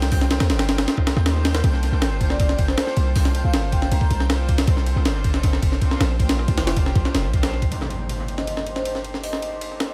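Drum and bass with a jungle edge, this raw, dark excerpt runs in a straight 4/4 with a gritty, compressed breakbeat kit up front: thumpy kick, medium-tuned snare, hi-hat and ride cymbal, all pitched up, tape-warm and soaked in dub echo. A deep, boomy 808-style bass with a sine body and a noise layer sits just as forward, its fast attack decaying under each note until it drops out at 7.7 seconds. Behind them, a rich chamber string section holds earthy, lightly vibrato-tinged chords through a low-pass filter, moving from F7 to Bbmaj9 and Bb6 before settling on Cm7. A twinkling granular texture with an octave-up shimmer glimmers softly in the background, while a mellow, close-miked vibraphone played with soft mallets adds metallic, ringing phrases roughened by 12-bit sampler grit and dub echo, first at 2.3 seconds and again near the end. An electronic impact lands at 7.7 seconds as the arrangement shifts into its second section, and the mix stays dry on reverb but heavy with echo.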